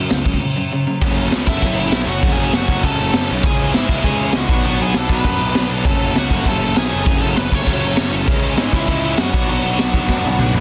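A dense, heavily limited master with little reverb gives this urgent, raw punk rock excerpt in straight 4/4 its crowded punch. A double-tracked, overdriven semi-hollow guitar riff and a growly fuzz bass move through F#m, C#m and Bm, while an up-front garage drum kit with a high-tuned snare, punchy kick and gritty, pumping small-room sound sits loudest and closes on a drum fill at 10.1 seconds. From 1.5 seconds a high-gain lead guitar carries a bright, distorted melody through tape echo.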